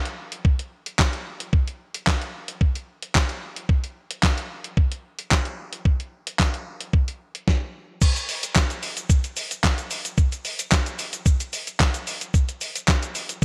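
Pop drum-machine groove at 111 BPM in a straight 4/4, confident and energetic, where a clean 12-bit sampler-style kit with a thumpy kick, fat snare, handclaps, hi-hat, shaker and crash cymbal sits up front, re-recorded in a small room with light reverb, playing from 0.1 to 13.4 seconds and shifting into a new section at 8.0 seconds.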